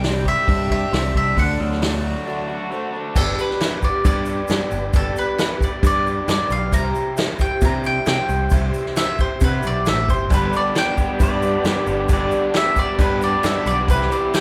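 A bright, double-strung bowl-back mandolin leads this jangly, open-road folk and heartland rock excerpt at 134 BPM in G major, soloing from 3.2 s over a shimmering, octave-doubled twelve-string acoustic guitar, an overdriven garage guitar riff with spring reverb, a punchy up-front vintage drum kit with dark cymbals, a direct and amped picked electric bass, a woody upright piano in the background, a very quiet tonewheel organ on slow rotary, a grainy, distant tube shaker and a brief clean pedal steel line at 11.2 s, all set in a moderate recital-hall reverb.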